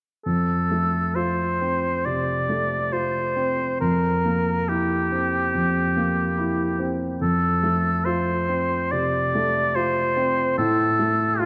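At 0.3 seconds an oboe and a grand piano begin together in a tender, lyrical romantic duo in F major, moving at 70 BPM in 4/4 with a freely breathing rubato feel. The oboe carries the melody between F4 and D5, its tone smooth at the top with a light vibrato, sitting up front in a classical solo role. Beneath it the piano accompanies from F2 to F4, with a present, polished sound that also stands close to the listener. The harmony rests on F, shifts to C7 over an F bass at 3.8 seconds, returns to F at 7.2 seconds, and gives way to unharmonised sound at 10.6 seconds. A wet concert hall reverb and a dark, warm production wrap the pair in a soft glow until the passage, cut from a longer piece, stops at 11.5 seconds.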